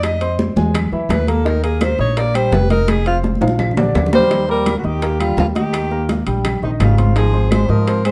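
A breathy, intimate alto saxophone solo leads this sophisticated, lively Afro-Cuban jazz passage in Eb major at 168 BPM, over a long-sustaining grand piano with deep bass, up-front woody pizzicato upright bass, ringing close timbales, bright high-tuned congas, round low-tuned bongos and distant claves, with a drum fill at 2.9 seconds before a buzzy, metal-muted trombone enters low in the background at 4.1 seconds, the whole passage set in moderate studio reverb.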